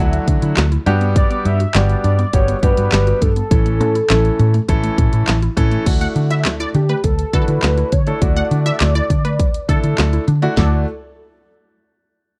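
A velvety, detuned synth lead carries the melody from the first moment over a clear grand piano and a dark, foam-muted fingered electric bass, both pumping with sidechain, while a woody, mallet-like synth pluck plays arpeggios in the background and a punchy, layered pop drum kit with handclaps, toms and crash cymbal sits up front. This upbeat, euphoric dance-pop cut in straight 4/4 moves from Dadd9 through Gmaj7 to A, and at 6.0 seconds a lush, bright unison pluck with phaser adds a second melody line. The sound is dry and close, in the manner of a 1970s studio with digital ambience, and the bass sits loudest in the mix.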